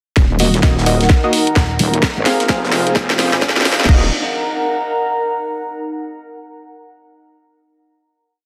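A short, swaggering and aggressive bass house build opens at 0.2 s with a tight, up-front electronic kick on four-on-the-floor, a garage drum kit's cracking snare, hats and crash, a very quiet damped 70s kit with a fat, dry looped breakbeat, and a heavy, saturated wobble bass with shifting wobble speed, all over a nostalgic, lo-fi warbly tape-like pad. A nasal band-passed chord stab plays syncopated parallel chords with dub echo and a filter sweep, a deep, moody analog pad holds sustained chords, and a metallic FM bass adds chopped, overdriven phrases in the background, with a faint electronic riser, the pads, stab and basses pumping against the kick as Ebm moves to Fm. The build, with its drum fill, gives way at 3.9 s to a final chord that rings in the tape pad within a lush hall reverb and a dense, heavily limited master.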